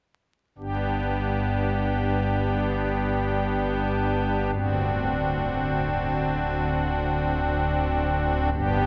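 A shimmering pipe organ on its strings celeste stop sits up front in a wet cathedral reverb with a long decay of 5.6 seconds, with vinyl crackle underneath. This brief chorale-style classical passage, cut from a longer piece, moves in free time in G major, its soft, romantic voicing reaching from deep bass notes to the middle register. The organ plays alone from 0.6 to 8.9 seconds, sounding a G chord before shifting to D7 at 4.5 seconds, and the mood is majestic and reverent.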